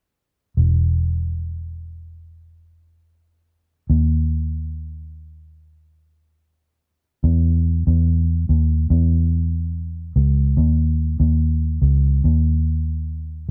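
A vintage muted electric bass, played with the fingers, enters at 0.6 s and carries this heartfelt, emotional pop excerpt alone at 72 BPM in a straight 4/4. Its foam-muted tone is round and punchy, sitting up front in a dark, dry mix, and it moves into a new section at 7.2 s before the cut at 13.5 s.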